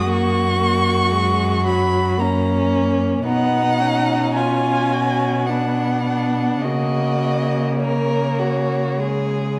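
Bathed in a wet concert-hall reverb, this serene, slow romantic movement for string quartet in F# major drifts with rubato in 3/4 at around 51-57 BPM, its first violin singing an expressive melody up high with vibrato and portamento, the second violin adding a soft-attacked, close inner line, the viola supplying smooth, even accompaniment, and the rich, up-front cello anchoring the bass as the harmony moves from F# through B and B minor to a C#5 chord at 9.0 seconds.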